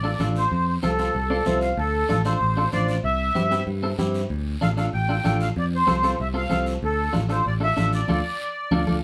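A straight four-beat cumbia groove drives this passionate latin excerpt, with a sweet, reedy accordion melody in light tremolo tuning up front over twangy clean electric guitar accompaniment that slips in a brief fill at 1.1 seconds, a growly picked electric bass, soft-handed, low-tuned congas in the background and a raspy guiro, set in a moderately reverberant studio before a band accent at 8.1 seconds.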